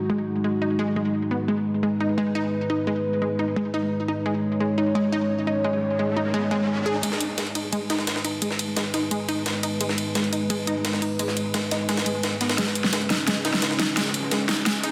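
A straight 4/4 pulse at 173 BPM drives this mechanical, dark technical drum and bass excerpt in G# minor, where a moody, detuned analog pad holds sustained chords with chorus under a punchy unison pluck playing arpeggios through tape echo, both parts under filter sweeps from the start. A background riser rises at 5.4 seconds, and at 7.0 seconds two drum kits enter up front: an overdriven dubstep kit with a huge snare and hi-hat, layered with a gritty, pitched-up jungle sampler-style kit of ride cymbal and medium-tuned snare, building toward a drum fill at 12.6 seconds. The dense, heavily limited master sits in a lush hall reverb.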